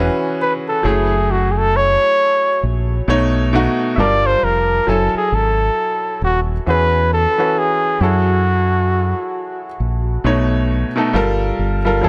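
Introspective and soulful, this neo-soul R&B excerpt pairs a dark, round fingered electric bass with an intimate baby grand piano whose action noise can be heard, while a punchy flugelhorn with vibrato and tape echo enters at 0.4 s, solos through the opening section and carries the melody until 9.8 s over chords such as E69, F#m9 and B9, all set in a small, lightly reverberant room.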